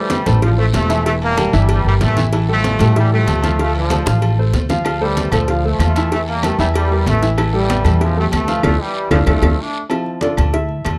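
Passionate and danceable, this short cut from a longer salsa piece at 190 BPM in D minor sets a brilliant, tight trombone section with light vibrato on the melody over clear upright piano, an up-front pizzicato upright bass with steel strings, thick-skinned low-tuned congas, high-tuned cowbell and bongos, ringing metal-shell timbales and agogo bells, a raspy guiro, and woody claves that enter at 4.8 seconds, with drum fills and a band accent leading into a brief piano solo at 9.9 seconds.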